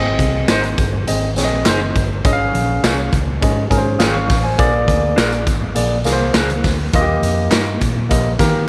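A barky, lightly overdriven tine electric piano and a round, foam-muted electric bass open this danceable, uplifting slice of uptempo 1960s-style soul at 102 BPM in Ab major, moving from Ab through Db/Ab and Bb7 to Eb. A gritty, saturated garage drum kit with a punchy kick sits up front in a pumping stone room, joined by very quiet low-tuned congas and a close, dry blend of egg shaker and group handclaps, while a dark, slightly broken-up electric guitar adds stabs through tape echo from 0.5 s. The electric piano takes a short fill between 3.7 and 4.6 s, and moderate spring reverb with small-room ambience frames the mix.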